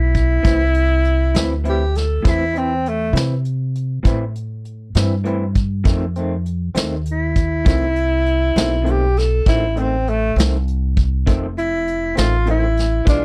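A breathy tenor saxophone carries a mournful, smoky slow blues solo at 66 BPM in 12/8, its subtoned, scooped notes given a slapback echo over a growly pizzicato upright bass, a brushed vintage drum kit with a punchy kick, and a twangy, slightly broken-up electric guitar with tremolo entering at 0.4 seconds, all in a dry, close 1970s-style studio sound as the chords move from Am to F7 in this excerpt.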